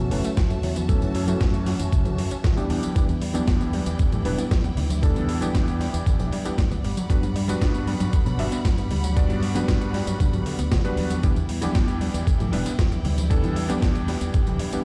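Heard through a big sound system in a bare, reverberant room, this cosmic, sleek nu-disco excerpt in E dorian moves at 116 BPM in a straight 4/4 over F#m7, Em7 and Gmaj7 chords, with a thumpy, overdriven electronic kick up front, a gritty sampler-style kit of hi-hat, snare and tambourine, very quiet soft-handed congas, a punchy fingered electric bass through an envelope filter, a clear vintage electric grand piano comping under a filter sweep and digital delay, lush bowed symphonic strings holding chords with sidechain pumping, and faint, detuned sawtooth unison plucks tracing arpeggios.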